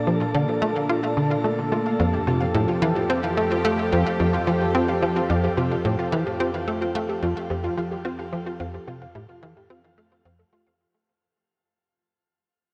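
Drenched in a long shimmer reverb, this short cut from a longer piece of ambient, sequencer-driven space music feels cosmic and expansive, moving at 109 BPM in F major from Bbmaj7 to Fadd9. Up front, a punchy sawtooth-and-square sequencer bass with ring modulation and chorused delay drives a tight riff, while a bright, airy resonant pad with slow filter swells holds sustained chords through its chorus. Further back, a lush, warbling unison pluck spins delayed arpeggios that fade in across the whole clip as a fade-out begins at 4.9 seconds.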